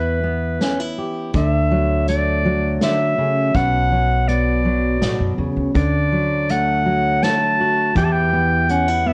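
A bright, present clarinet opens this peaceful, pastoral folk piece, carrying a classical-style solo up front over a fingerpicked steel-string dreadnought guitar and a pizzicato upright bass, all sounding from the very first moment. The guitar is full-bodied and close, while the bass adds a woody, thumpy low end on its steel strings. At 0.6 seconds an acoustic drum kit joins from a distance, its hi-hat, punchy kick and medium-tuned snare played with bundle sticks in a roomy studio space, with a rolled-off top. The small band moves gently in 3/4, cycling through Em, D and Bm before returning to Em near the close of this 9.1-second fragment of a longer piece. Light reverb and the warbling pitch drift of worn cassette tape give the whole recording a faded, homespun character.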